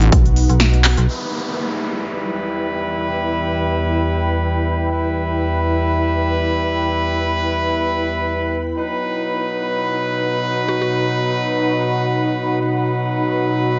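Warm horn stabs with light vibrato and digital delay sit up front in this bouncy, aggressive bass house piece in free time and E harmonic minor, entering at 1.1 s over an evolving, detuned sawtooth pad with a filter sweep and an ethereal, airy pad, both pumping to the sidechain, after an opening drop where a punchy, layered big-room drum kit with crisp hats and a fill at 0.8 s drives a dark, overdriven metallic FM bass, as an electronic downlifter follows and a woody, mellow mallet-like pluck with phaser surfaces briefly in the background near 10.7 s.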